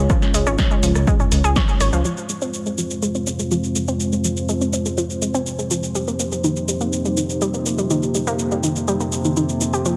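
Set in light reverb and digital ambience, this hypnotic, dramatic melodic techno excerpt layers a moody, detuned pad and a round, nasal, wave-folded pluck arpeggio with digital delay, both chorused and sidechain-pumped, over a deep, rumbling saw bass and an overdriven, punchy kick that both fall away by 2.0 s, while a small-room analog drum machine carries hi-hat, rim click, shaker, snare and toms and an evolving, pulse-width-modulated drone enters at 2.6 s as the chords move from Db to Fm and Cm7.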